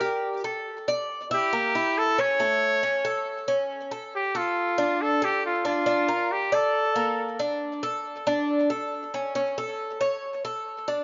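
Sultry and warm, this Latin fragment rides a straight four-beat pulse. A trumpet carries the melody in a pop style, its punchy tone marked by light vibrato and scooped notes, sitting up front while still sounding roomy. Beneath it, a Cuban tres picks mellow acoustic arpeggios on metallic double strings, some of them octave-doubled, with a tape echo trailing its notes. The trumpet drops out at 7.4 s, leaving the tres to play alone until the cut at 11.0 s. A moderate spring reverb and a softened top end give the sound a hazy, intimate glow.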